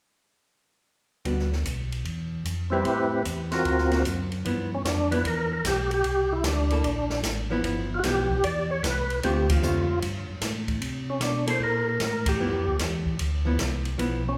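Swung eighths at 151 BPM in 4/4 drive this soulful soul jazz organ trio excerpt in G, where an open acoustic jazz kit with dark cymbals and a boomy kick, a round, mellow tonewheel organ bass with light overdrive, chorus vibrato and a slow rotary speaker, and clean, picked hollow-body archtop guitar accompaniment are joined at 2.7 s by an up-front, fat, percussive tonewheel organ melody with key click, before the harmony moves into G mixolydian at 4.4 s, the band hitting accents at 9.4 and 12.2 s inside a wet recital-hall reverb.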